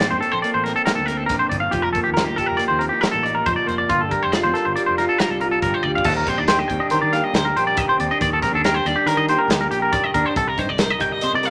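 Intricate and wistful, this short cut from a longer piece of math rock and midwest emo moves at 139 BPM in a straight 5/4. Up front, a clean, scooped, twangy electric guitar plays fingered arpeggios in a high register, its compressed tone warm. Beneath it, a second electric guitar through a small old amp carries the accompaniment with a bright, slightly broken-up, lo-fi edge to its picked playing. A fingered electric bass adds a growly low end, heard both direct and amped, while a modern acoustic drum kit in a small room drives the odd meter with a tight kick, medium-tuned snare, hi-hat and crash. The harmony drifts through lush extended chords from Bbmaj9 to Gm9, and a drum fill at 5.8 s leads into a new passage at 6.1 s that settles on Ebmaj7 before turning to Cm7, all bathed in moderate studio reverb.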